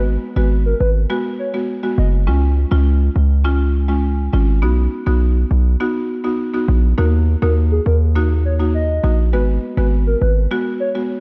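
A dark, warm production in a small room frames this hypnotic, bouncy dancehall fragment at 102 BPM in a straight 4/4, cut from a longer piece. A hard-hitting 808-style bass sits up front, punchy and heavy with a sine core, a noise layer, a fast attack and a decaying tail, anchoring the low end. Above it, a buzzing marimba played with medium mallets on hardwood bars adds a dry, woody, airy accompaniment in the middle register. A hollow, clarinet-like synth lead carries the melody in brief phrases, first at 0.4 seconds and again from 7.0 seconds. Its soft, full-bodied square and triangle blend is shaded with vibrato, chorus, phaser and delay for a mellow, sustained voice. The harmony moves through Abm7, Db, B and Ebm before returning to Abm7 at 9.3 seconds.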